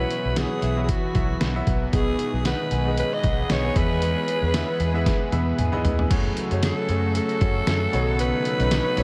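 Dramatic and nostalgic, this 1980s-style pop fragment moves at 115 BPM in 4/4 with a light sixteenth-note swing, set in F# dorian and drifting through chords from Bsus4 and G#m/B to E before settling on F#madd9 and Badd9. A raspy, gritty alto saxophone carries the melody up front, its bright pop-style solo tone colored with vibrato and trailed by a diffuse ambient delay. Beneath it, a clear, polished baby grand piano supplies accompaniment while a sweeping, resonant pad of detuned sawtooth and triangle tones with ring modulation and chorus holds sustained chords in the background, its slow attack and filter swell giving it an evolving, full-bodied shape. A very quiet, clean electric guitar recorded direct plays a compressed, scooped riff, and a dark, foam-muted fingered bass adds a round, punchy low end. The trip hop sampler-style drum kit enters at 0.1 seconds, pitched down and muffled with a thumpy kick, tape-warm character and tambourine among its pieces, and plays a fill from 5.1 to 6.1 seconds into the next section. 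The whole mix is soaked in a huge, dreamy ambient reverb.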